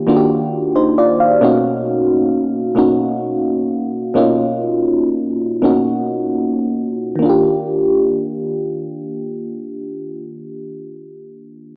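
Played alone on a warbling, mellow FM electric piano up front, with a phaser and a layer of cassette hiss, this intimate, tender R&B fragment in a straight 6/8 moves from Ebmaj9 to Bmaj9 and slows down from 1.4 to 7.2 seconds before returning to Ebmaj9, all heard through a spring reverb on a small speaker, with a home-cassette feel.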